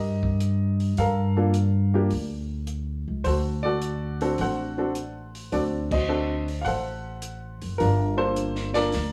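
Jazz piano trio in a swinging, late-night mood, cut from a longer piece, with an intimate baby grand carrying the melody up front, its short sustain, audible action noise and plate reverb giving a natural, close feel. A woody, growly pizzicato upright bass sits just as near beside it, while a compact cocktail kit with dark cymbals, a high-tuned snare and a punchy kick enters at 0.2 seconds, sounding dry and set further back in a small room. The harmony moves from a rootless Cm7 through Gm9 and D7 before returning to Gm9, and the whole trio hits a shared accent at 5.8 seconds.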